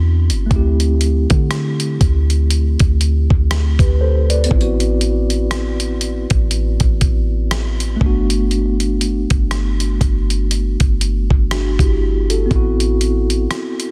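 A deep, boomy 808-style bass with a sine body and noise layer sits up front in this moody, late-night contemporary R&B excerpt at 60 BPM in A dorian, joined at 0.3 s by a gritty, compressed sampler-style drum kit of thumpy kick, hi-hat and rim click with a 16th-note swing, while a mellow, clean tine electric piano heard through its built-in speakers moves through Am69, D7sus4 and Gmaj9 chords under digital ambience and a dense, heavily limited modern master.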